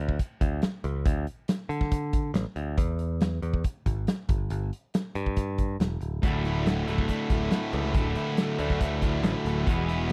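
Classic rock at 139 BPM with a confident, sunny mood, this excerpt opens on a growly, bright picked electric bass and a big rock drum kit with a dark, smooth tone, a punchy kick and a medium-tuned snare, moving through D5, E and G5. At 6.2 s, as the harmony lands on Dsus2, two picked electric guitars enter playing a riff: one up-front and distorted, the other sludgy, warm and overdriven. The dry, close sound recalls a 1970s-style studio, with bass, drums and the distorted guitar sitting up front.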